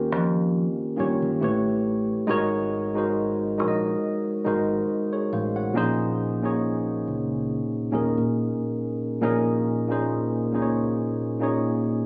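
Caught on a phone in the room, the sound carries a light club reverb and compression around a smooth, soulful R&B groove in Bb minor at 69 BPM, swung on the 16ths and tuned a touch low to A4 = 438 Hz. Up front, a worn, barky tine electric piano, slightly out of tune and lightly overdriven through a combo amp, moves through chords from Eb13 to Bbm11. Beneath it, a dark, round fingered dub bass, direct and amped, sits deep and drops out at 10.9 s, leaving the keys alone until this fragment breaks off at 12.1 s.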